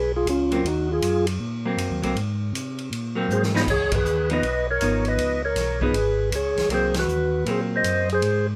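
Bluesy and soulful, this excerpt of a soul jazz organ trio swings at 158 BPM in 4/4, with an up-front tonewheel organ carrying the melody in a soft, flute-like voice with percussive attack and key click through a slow rotary speaker, while a second organ handles the bass with a round, lightly overdriven tone, chorus vibrato and its own rotary. A clean, picked hollow-body electric guitar adds accompaniment, and a distant, roomy drum kit with dark cymbals and a boomy kick plays a fill at 3.3 seconds. The band hits accents at 3.9 and 6.9 seconds over chords moving through Db7, Ab9 and Db9, set in light reverb.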